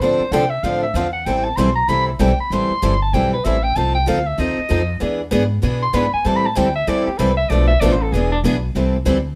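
A swung 4/4 at 192 BPM drives this fiery, virtuosic excerpt of acoustic string swing in A minor, where the upright bass thumps woody, dark gut-string pizzicato up front beneath two picked steel-string acoustic guitars, one a bright concert guitar with audible finger squeak and the other a quieter, boxy parlour guitar. From 0.0 to 8.8 seconds a vintage-toned soprano saxophone takes an up-front jazz solo with vibrato, a soft attack and scooped notes, moving through chords such as Dm9, F7 and E7 before settling on Am7. A moderate studio reverb surrounds the group.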